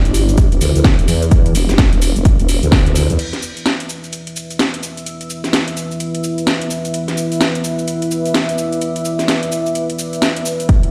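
Swung sixteenths in 4/4 drive this bouncy, aggressive bass house excerpt, where a nasal, resonant, formant-filtered wobble bass pumps up front until 3.2 seconds beside a punchy kick that drops out at 2.8 seconds and briefly returns near the end, a band accent hits at 2.7 seconds, and a detuned, dark analog pad then carries sustained chords beneath a deep, moody ambient pad, while a tape-tinged house kit with cracking snare, metallic hats, shaker and crash keeps moving, a very quiet riser flickers at the close, and the whole mix sits in a light stone-room reverb.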